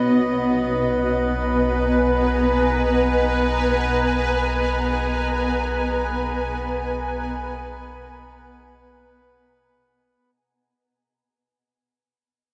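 A wet cathedral reverb with a long 5.3-second tail surrounds this peaceful, serene ambient passage in free time, cut from a longer piece and fading out from 3.1 seconds to its close. Up front, a cloudy, detuned granular pad holds mellow, blurred chords with its own built-in reverb, resting on a single G#madd9/B harmony. Beneath it, a round, dark analog bass sustains a deep B1 touched by ring modulation, while a reedy, breathing pedal harmonium drones in the background.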